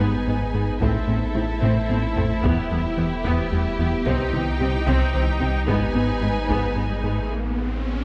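Vast and relentless, this cut from a longer hybrid orchestral and electronic film cue moves at 74 BPM in 6/8, building throughout in a dark production with moderate scoring-stage reverb. A lush, distant violin section carries a second line above an intense viola accompaniment and very quiet cellos, while an ethereal pad with ensemble chorus sustains chords, a glassy wavetable pluck with chorus and delay spins arpeggios in the background, a rubbery square bass drives a riff and a clean sine sub anchors the low end. Very quiet taiko played with hard sticks enter at 0.4 seconds with a fill at 1.6 seconds, and an electronic riser arrives at 6.8 seconds as most parts fall away into a brief break.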